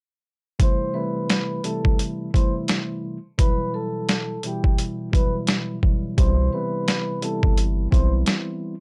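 A swung, pitched-down boom-bap kit at 86 BPM, with a thumpy kick and overdriven, compressed grit sitting up front, drives this reflective, gritty hip-hop excerpt, while a mellow tine electric piano lays clean chords (Am7, Emadd9/B, Cmaj7) beneath a metallic, ringing soft-mallet vibraphone melody touched with delay, and a deep, round dub sub bass enters at 6.2 s, all set in a dark production with light reverb.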